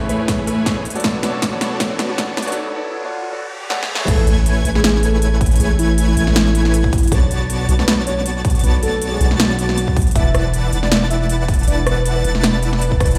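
A half-time, lightly swung future bass excerpt opens with a bright concert grand piano, a faint unison pluck arpeggio and a huge, detuned supersaw riff under a filter sweep, soon joined by quiet risers, with punchy tape-warm drums and kick building to a drop at 4.1 seconds, where a deep sustained 808-style bass, a round octave-layered lead with 12-bit grit and dub echo, and a dreamy background arpeggio lead pump against the kit in a euphoric rush through Amaj9, Bm9 and E7sus4 in a large reverberant room.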